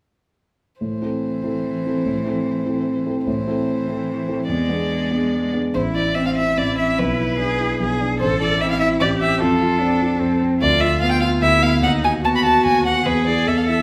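Quick classical-period piano trio music in triple time with a rubato feel, this urgent, dramatic excerpt from a longer movement pairs a rich, focused bowed violin melody with a smooth top and an expressive cello second line of soft attacks and portamento, both strings singing with vibrato, over a dark, mellow concert grand piano accompaniment with deep bass, violin and piano sitting up front as all three play from 0.8 to 13.8 seconds in a wet recital-hall reverb.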